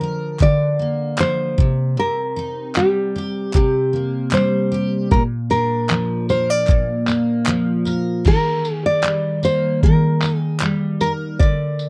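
A fingerpicked nylon-string guitar carries a heartfelt, carefree melody with audible finger squeak over a double-tracked, woody steel-string acoustic guitar picking out Bb/D, Cm7 and Bb chords in this straight 76 BPM acoustic pop cut in Eb major, joined at 0.4 seconds by a muffled, tape-warm sampler-style drum kit with a thumpy kick, crash, tambourine and handclaps plus a faint, hollow group handclap, the guitars and drums sitting up front in a dry, close 1970s-style studio sound before moving to Eb at 8.3 seconds.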